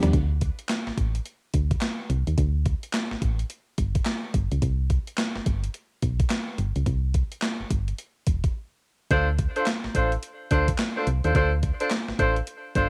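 A dry, lo-fi cassette home recording cut from a longer piece, this upbeat, bouncy new jack swing groove at 107 BPM with a swung sixteenth feel pairs a punchy, round FM bass with a thumpy, overdriven 80s drum machine of kick, gated-reverb snare, handclaps, hi-hat and toms, moving from D5 through Cmaj7 to Dm7, and after a short break at 8.5 seconds a tight, dark, jazz-style horn section with light vibrato and tape echo enters at 9.1 seconds with up-front stabs.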